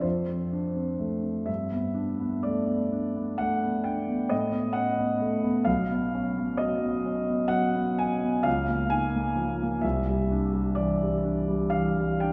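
In a 9/8 metre, the pulse moves slowly at 39-45 BPM in dotted quarters and bends freely with rubato, so the bar lines feel softened and elastic. This is classical solo piano music in an impressionist vein, hazy and mysterious in mood, taken from a longer piece. A concert grand plays alone throughout, reaching from a deep bass B1 up to G#5, with a clear, up-front presence and a long sustain that lets each sonority linger. Rich, colourful harmonies drift past, from F6 through G69 and A69 to Badd9 at 5.7 seconds, then C#69 and Cadd9 near the end, giving the passage a floating, unresolved glow. A generous church reverb of about 3.1 seconds surrounds the instrument, placing it in a resonant sacred or concert space that deepens the misty atmosphere.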